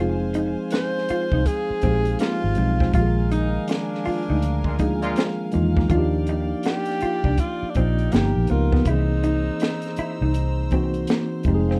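A breathy tenor saxophone carries the melody from 0.7 s, its mellow, jazz-style line marked by scooped notes, light vibrato and a slapback echo. This short cut from a longer neo-soul and R&B piece has a smooth, sensual mood and an unhurried swung feel. Underneath, a mellow tine electric piano comps through its built-in speakers while a foam-muted fingered bass sits round and up front, and a compact cocktail kit enters at 0.3 s with a high-tuned snare, punchy kick and hi-hat under a rolled-off top. An electric guitar through a small old amp adds a slightly broken-up, lo-fi second line with tremolo and slapback echo, and a studio string section holds bowed chords with a reedy, gut-string tone. A tight horn section punches in with a brief stab at 4.6 s within a band accent, as the harmony moves from Fm7 through Bb7sus4 to Ebmaj9 and on to altered dominant chords. Light reverb and a rough home-demo mix give the whole a casual, intimate sound.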